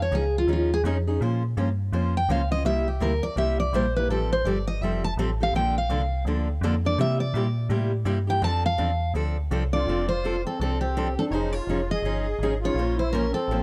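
Swinging at 166 BPM in 4/4, this lively, charming acoustic jazz manouche excerpt in F major features a full-bodied picked steel-string guitar melody with audible finger squeak, which solos until 9.9 seconds over a bright picked acoustic guitar accompaniment and a metallic, fast-attack FM bass, while a reedy, shimmering musette accordion second line enters at 9.7 seconds, in a dry, close recording with a 1970s studio character.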